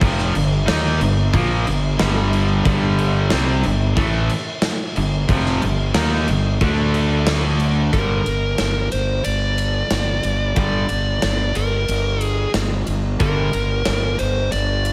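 A heavy, driving hard rock excerpt at 91 BPM in G minor opens with two picked guitars riffing together: a bright, overdriven cranked stack guitar and a tight distorted one set in the background, both touched with slapback echo. They ride over a fuzzy, round, punchy fingered bass up front and a big acoustic rock kit with a tight kick, medium-tuned snare, crash and ride, and a rolled-off top. At 7.9 seconds a dark, smooth lead guitar steps forward with a melody carrying overdrive and slapback echo, and the rhythm guitars stop at 13.5 seconds while bass, drums and lead carry on to 14.9 seconds, all inside a lush hall reverb with a big arena sound.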